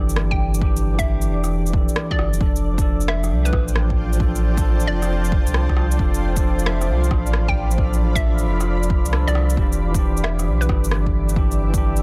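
Future garage with a wistful, rainy mood, this excerpt rides a swung 4/4 groove built from a punchy, layered electronic kick and an electronic shaker and rim click, both re-recorded in a small room, with soft clipping on the snare. A deep, round sine sub bass sits up front with a fast attack, pumping through sidechain compression. A clean tine electric piano heard through built-in speakers supplies the accompaniment, its dub echo and sidechain pumping giving the chords a breathing motion, while a cloudy, evolving granular pad blurs detuned sine and sawtooth layers into bright sustained chords that swim in their own reverb. From 0.3 seconds a hollow, bouncy square-wave pluck carries the melody with chorus, a noise layer, a sub octave and vintage 12-bit sampler grit, trailing dub echoes until it stops at 10.8 seconds. The harmony moves from Em7 to F6 and back to Em7, and the kick drops out briefly at 9.1 seconds, all set in digital ambience under a dense, heavily limited modern master.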